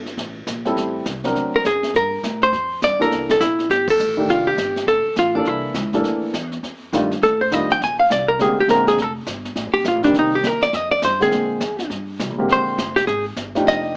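This cut from a longer piece comes through a small speaker with a moderate small-room reverb, giving it a close, boxy presence. It is small-group swing and bop jazz in 4/4 with a swung eighth-note feel and a playful, sophisticated mood. A plucked upright bass, woody on steel strings, sits low beneath a brushed drum kit whose high-tuned snare, boomy kick, hi-hat and ride cymbal sound natural in a studio room. Up front, a dark, mellow baby grand piano accompanies with short sustain and audible action noise, moving through harmonies that include thirteenth and augmented chords. The clean, compressed hollow-body electric guitar carries the melody from 1.6 seconds, joins a band accent at 3.8 seconds, and then takes a solo from 6.6 seconds to the end.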